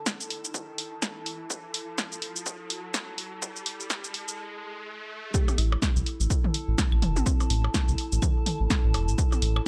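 A deep, round analog bass with sidechain pumping anchors the drop, which lands at 5.3 seconds in this hypnotic, cool minimal techno excerpt at 125 BPM with swung 16ths; the bass enters shortly after it, alongside electronic toms, percussion blips and claves and just after a woody, mallet-like synth pluck treated with chorus and tape echo. A dry, punchy high-passed electronic kick and analog drum machine hi-hat, shaker and snare drive the track from the start beneath a warbling, nostalgic lo-fi tape-like pad with chorus, reverb and pumping, and an electronic riser builds to a brief stop before the drop, in a gritty digital ambience.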